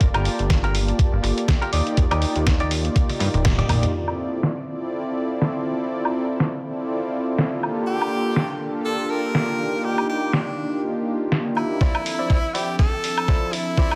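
The groove sits at 122 BPM in 4/4 with a light swing on the sixteenths, a sensual, cosmic nu-disco cut taken from a longer piece. A gritty, thumpy electronic kick and a dusty, sampler-style soul kit with a fat snare, filtered hi-hats, toms and woodblock drive it up front, while a thick, detuned sawtooth bass holds the low end until about 3.9 seconds, just after a drum fill and a band accent. A smooth, mellow analog pad with chorus, delay and sidechain pumping plays throughout over Gm7, Ebmaj7 and Dm9, alongside a twangy, clean picked electric guitar riff that drops out and returns at 11.8 seconds. From 7.9 seconds a bright, close-miked tenor saxophone takes the lead with vibrato and scooped notes, trailed by analog delay. The final seconds build up with a drum fill, the kick's return and filter sweeps on the guitar and pad. A plate reverb soaks the mix in a dreamy haze.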